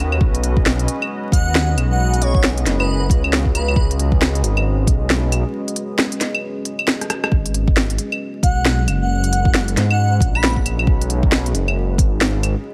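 A shuffling 4/4 groove with a swung sixteenth-note feel drives this rainy, melancholic future garage excerpt. A deep, tape-warm electronic kick anchors it, while an up-front organic electronic kit adds woody snare, smooth hi-hats, claves and rim clicks, all with a small-room character. Underneath, a menacing detuned saw bass with a filter swell and tube saturation pumps with sidechain compression, as does a dark, moody ambient pad whose slow-attack chords carry chorus, reverb and a gritty 12-bit sampler edge. An airy, dreamy lead drifts in at 1.3 seconds and again at 8.4 seconds, its soft, gliding tone softened by vibrato, chorus and dub echo. A break arrives at 5.5 seconds, closed by a short drum fill, and a layer of vinyl crackle wraps the excerpt in a dusty haze.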